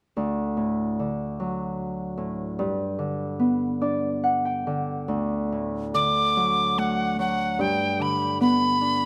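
Tender and nostalgic, this short Celtic slow air in D major drifts at about 73 BPM in 3/4, its beats uneven and pulled by rubato. A mellow, ringing Celtic harp carries the accompaniment from 0.2 seconds, fingerpicked and up front, moving between D and G chords and adding a fill between 3.4 and 5.1 seconds. At 5.9 seconds a breathy metal tin whistle enters with the melody, its crisp attack and audible chiff giving each note a clear edge. The whistle sits up front with lifted highs and vibrato, singing a little louder than the harp. A moderate scoring-stage reverb with a 2.0-second tail gives the pair a spacious glow, and the passage is cut from a longer piece, ending at 9.1 seconds.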